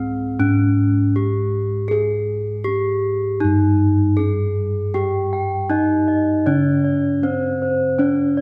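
A steady, straight 4/4 pulse at 79 BPM carries this stately, shimmering Javanese gamelan excerpt, where an up-front bronze metallophone struck with a wooden mallet rings out the melody over round, beating bossed gongs in the bass, while a second, airy metallophone adds arpeggios from 4.9 seconds, all bathed in a lush concert-hall reverb.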